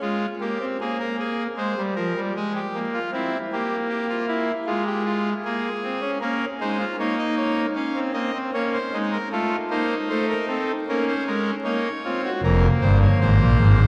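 A pipe organ sounds a trumpet stop on its own from the opening second, its brassy, bright voice with a chiff sitting up front in this short cut from a longer baroque-style four-part fugue. The piece is classical in style, in Bb minor at 77 BPM in a straight 4/4, and its mood is both contemplative and driving. The organ covers a broad span from F1 up to F5, its baroque voicing moving through harmonies such as Fm, C7, Bbm and F7/A before settling on Fm near 12.4 seconds. A wet cathedral reverb with a 4.9-second decay hangs around the organ. The overall production is dark, with vinyl crackle running beneath the music until the cut ends at 13.9 seconds.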